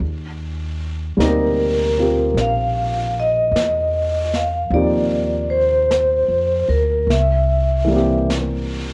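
Jazz ballad at a slow 51 BPM in Eb major with a romantic, late-night mood, where a dark, mellow grand piano carrying cassette-tape color and a woody, thumpy pizzicato upright bass play from the start above a softly brushed drum kit, a ringing, metallic vibraphone with fast motor vibrato and its own tape tint enters up front with the melody at 1.3 seconds, and the harmony moves from Eb69 to C7 at 7.1 seconds in this light-reverb home cassette recording cut from a longer piece.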